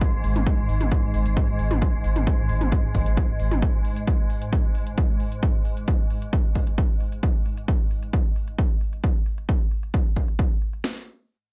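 Driving peak-time techno with an industrial, hypnotic mood, this short excerpt is built on a punchy, up-front drum kit with a cracking snare and smooth hats, joined by a second, quieter kit layer of hats and toms whose low-passed, sidechain-pumped tone is shaped by a filter sweep. A deep, saturated sine sub bass with overdrive and a fast attack pumps against the kick until 3.6 seconds, while a swarming, detuned drone with a slow, granular attack and its own reverb hovers tensely until 7.3 seconds. The overall sound is dry and close.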